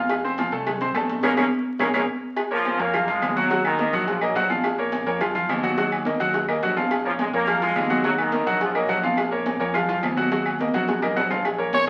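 Salsa at a driving 212 BPM in Bb minor, this passionate fragment from a longer piece rides on an up-front, brilliant baby grand piano with audible action noise and a punchy fingered electric bass, over a bed of high-tuned congas, tight cowbell and bongos, ringing agogo bells and timbales, and woody claves. A clear trombone section with light vibrato carries the melody from 1.2 s, meeting a band accent and drum fill as the chords shift between Bb minor and Eb minor, and a raspy, growling trumpet appears only at 11.7 s. The sound sits in a wet large studio reverb with the crackle of a very old 78 rpm record.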